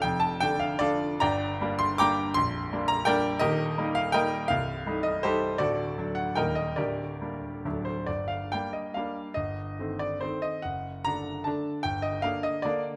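Classical romantic triple-time dance in 3/4 with dotted rhythms and rubato, a wistful, nostalgic fragment cut from a longer piece and moving between 132 and 177 BPM. A solo baby grand piano, clear and natural with short sustain and placed up front, plays from Bb0 to D6, settling into G minor from 3.4 s and passing into a new section at 8.1 s, all heard through close, detailed microphones in a recital hall with moderate reverb.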